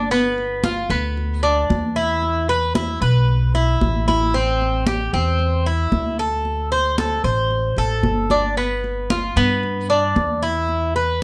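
Latin Cuban son and guajira at 113 BPM in 4/4, this sultry, danceable excerpt sets an up-front, metallic Cuban tres picking arpeggios on double strings over a woody, thumpy pizzicato upright bass and bright, high-tuned congas in a moderate studio reverb, as the chords cycle through G7, E5, Am7 and D5.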